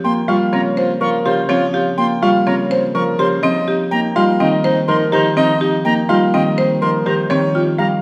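From the first moment, all five instruments sound together in this urgent, hypnotic stretch of minimalist classical pattern music, cut from a longer piece and moving at 124 BPM in a straight 4/4. A clear concert grand piano carries the melody between Bb4 and G5, its tone natural and long-sustaining with a deep bass. Beneath it, a mellow soprano saxophone plays a second line in a smooth, classical style with light vibrato, while a thumb-plucked Celtic harp sits up front with ringing accompaniment in the low register. A buzzing marimba struck with medium hard mallets spins arpeggios on woody hardwood bars, its sound dry and boxy, and a silver concert flute adds airy, metallic arpeggios high above, with a soft attack and vibrato; both of these stop at 7.9 seconds. The harmony moves from Gm7b5 to Cm7 at 3.4 seconds, and a moderate recital hall reverb gives the ensemble a sense of space.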